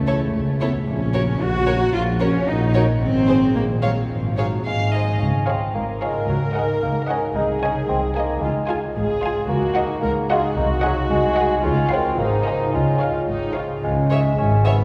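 A roomy, distant bassoon enters at 4.4 s in this playful, whimsical film cue, where intimate sul tasto violin sections carry a smooth-topped melody and a softer second line over dark viola and cello sections, a bowed double bass section, a mellow tuba heard early and again at the close, a ringing fingerpicked harp in the background and very quiet French horn chords from 5.5 s, washed in a long cathedral reverb for a quirky, magical mood.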